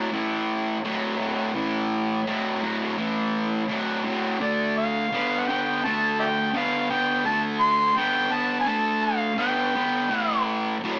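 A thick, fuzz-drenched electric guitar opens this brooding rock excerpt at 84 BPM, picking out a double-tracked riff that sits up front with a bright, distorted edge. The riff moves from an A5 power chord to D minor and back, giving the passage a smoky, heavy-lidded feel in a straight 4/4. At 4.4 seconds an amplified, overdriven harmonica enters with a gritty solo melody in its upper register, colored by light vibrato and tongue slaps. The harmonica drops out at 10.4 seconds, leaving the guitar to carry the riff to the end at 11.0 seconds. A moderate stone-room reverb and rough rehearsal-room sound, with saturation and a small-speaker character, give the recording a raw, close-quartered atmosphere.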